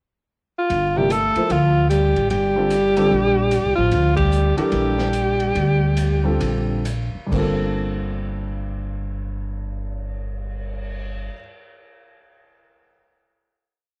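Recorded at home on cassette, this short modal jazz piece has a light reverb and a small-room ambience that give it an intimate, lived-in sound. In G minor and swung 4/4 at 127-150 BPM, it feels hypnotic and intense, opening on a brief pickup before the band settles onto a Gm11 chord. The clear alto saxophone carries a vintage, up-front melody built from short motifs in balanced phrases, with vibrato and scooped notes. A mellow, breathy trombone adds a close-miked second line an octave beneath it. A woody pizzicato upright bass plays in two, while a warm grand piano comps in syncopated quartal voicings with its action noise audible. The swinging drum kit, with a punchy kick and a medium-tuned snare, keeps a ride cymbal pattern and adds crash, hi-hat and cymbal swells. A band accent lands at 4.1 seconds as the tempo slows, and after the horns stop, the group holds a final chord from 7.3 seconds to the end.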